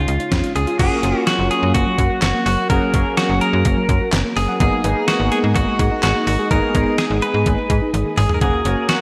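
A clean, twangy electric guitar melody with phaser and tape echo opens this wistful, nostalgic synth-pop fragment over organ-like ensemble string chords in the background and a snappy, metallic FM bass up front, joined at once by a soft, round chorused pluck arpeggio and a detuned 8-bit drum machine with a thumpy kick, then at 0.8 s by fat, brassy analog synth brass, with a drum fill at 7.9 s in a dreamy mix soaked in lush hall reverb.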